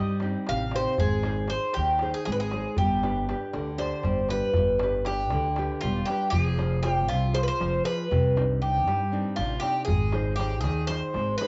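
Bittersweet and moody, this short excerpt from a longer Greek folk piece for bouzouki band moves in a straight 7/8 at 236 BPM in G phrygian dominant, with a bright, metallic, up-front bouzouki carrying the picked double-string melody over fingerpicked, full-bodied nylon-string guitar (both colored by cassette tape and plate reverb), a woody, thumpy pizzicato upright bass, and a crisp, deep metal-shell darbuka played with soft hands in the background from 0.2 seconds, all captured as a home cassette recording in a moderate studio room, with the harmony moving from Cm through Ab and G to Fm, Cmadd9 and back to Ab.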